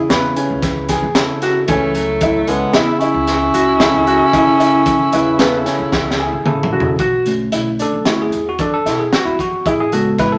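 In a brooding, intricate 5/4 with a straight feel, this progressive instrumental excerpt sets a bell-like tine electric piano, a clear concert grand playing arpeggios and a woody pizzicato upright bass under a crunchy, saturated breakbeat kit with a high-tuned snare and punchy kick, while a warm, classical-style bass clarinet carries the melody from 1.7 s to 6.5 s alongside a raspy, vibrato-laced alto saxophone line, and after a drum fill the electric piano takes a solo at 7.0 s in a room full of wet studio reverb.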